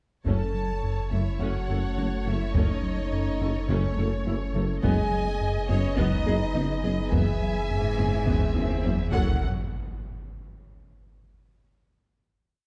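A dark, reverberant scoring-stage sound frames this relentless, futuristic hybrid orchestral and electronic film cue at 105 BPM in F# dorian, where a lush, vibrato-laden violin section carries the melody over a second, focused violin section doubling it at the octave, a portamento viola section drives a rhythmic ostinato, a tight French horn section holds sustained chords, a glassy FM pad enters at 1.3 seconds, a soft pluck and a round, wave-folded analog bass pulse in ostinatos, a distant cello section, a very quiet double bass section and a dark tuba share the bass with a thick, saturated sub bass drone, a compressed taiko ensemble strikes single big strokes, and an electronic swell and impact rises from 7.8 seconds into a final hit at 9.4 seconds.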